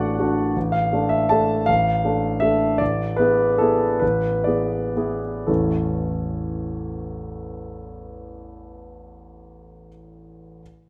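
A solo concert grand piano, warm and up front with deep bass, opens this playful, elegant classical waltz excerpt in A major and 3/4, its rubato tempo drifting between 108 and 168 BPM and slowing from 2.2 to 5.5 seconds as the harmony moves from D over A through D minor and E7 to arrive on A, all set in a moderate recital-hall reverb.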